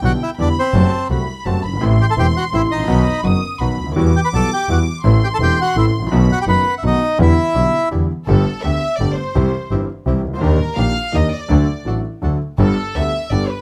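Set in a three-beat metre with a freely stretched, rubato feel, this tense and passionate tango fragment is cut from a longer piece. A reedy, full bandoneon carries the melody up front until 7.9 seconds, while a string section with gut-string tone and a smooth top plays a period-style second line. A second, darker bandoneon sits in the background with stabs. Underneath, a clear concert grand piano provides intimate accompaniment with deep bass, long sustain and audible action noise. A single bowed double bass stands prominently up front, boxy and intense, with vibrato and an airy bow. From 8.3 seconds the harmony brightens as the violins step forward with a solo at the top, all captured with close, detailed microphones in a dry room.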